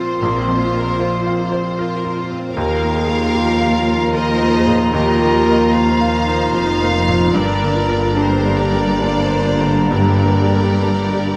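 Cinematic and sorrowful, this moving excerpt drifts in a rubato 3/4 at roughly 65-77 BPM over Bbsus2, Ebsus2 and Gm harmonies, with a distant, smooth violin section carrying the melody while a hollow, pure flute, a bright close-miked clarinet and a second lush violin line weave around it. A felt-muted upright piano with audible action noise, a warm, close viola section, a mellow, punchy French horn section holding sustained chords and a ringing, fingerpicked harp fill the middle, as dark cellos and focused double basses enter at 0.2 seconds to anchor the bass. A moderate scoring-stage reverb lends the ensemble a spacious, expressive glow.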